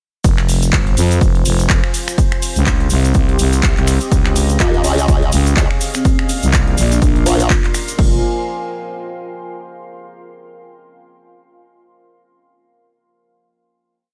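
A punchy, dry mix of swaggering, bouncy bass house at 124 BPM in F minor, swung on the sixteenths, where a growling FM bass and a punchy four-on-the-floor kick sit up front through a drop built on Fm, Cm, Db and Bb, with programmed hats, claps, snaps and ride plus a grainy, hand-played cabasa behind them. A moody analog pad with lush chorus and a deep, full-bodied ambient pad with its own reverb hold sustained chords underneath, both pumping with the sidechain. At 4.6 s a bright, overdriven formant-sweep wobble bass joins, answering the other bass with modulated phrases, while a woody soft-mallet marimba with delay adds short answering phrases until the ambient pad carries the final Fm chord out to 9.9 s.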